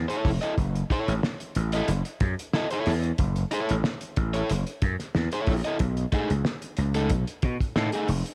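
A gritty, overdriven slap bass opens this short funk excerpt, growly and punchy up front, setting a sly mood at 92 BPM in a straight 4/4 feel. An overdriven electric guitar joins almost at once as accompaniment, picked and compressed with a warm tone. A cloth-damped drum kit of kick, snare and hi-hat sits close by, muffled and thuddy, with a fat snare, a tight kick and a rolled-off top that gives it a lo-fi, saturated character. The harmony rests on F#m7 in F# dorian before moving to B13 at 5.8 seconds. Studio ambience carries a faint mains hum underneath, and all three parts play through to the cut at about 8.3 seconds.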